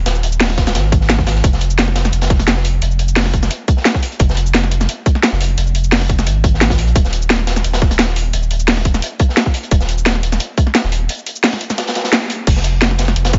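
Liquid drum and bass at 174 BPM in 4/4, this rolling, melancholic excerpt is cut from a longer piece and sits in a drop from the start, with a light 16th-note swing. A deep, round sine sub bass opens at 0.0 s, moving between Eb1 and Bb1 with a fast attack and sustained, mellow tone, placed up front. Two drum kits enter at 0.1 s. The first is a layered electronic kit with a cracking snare, bright hi-hats, cabasa and crash cymbal, overdriven and forward. The second is a dark, gritty breakbeat kit with a medium-tuned snare, saturated and rolled off at the top, with high-pass filtering on its hats, snare and room. A tight, overdriven electronic kick joins at 0.6 s, the whole band lands an accent at 12.1 s, and a small room ambience with its highs trimmed gives the mix a close, contained sound.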